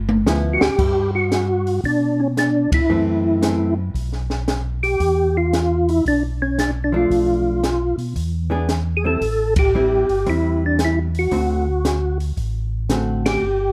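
Swinging and soulful, this soul jazz organ trio clip in G major moves at 114 BPM with a swung feel, as a percussive tonewheel organ with third-harmonic percussion carries the melody through slow rotary speaker and chorus vibrato over a mellow, round organ bass, while a clean, compressed, picked hollow-body electric guitar accompanies from 0.3 to 3.7 seconds and returns at 6.9 seconds, and an up-front acoustic drum kit in a small room, with dark cymbals, a high-tuned snare and a boomy kick, opens with a short fill and joins the band accents, all set in light reverb.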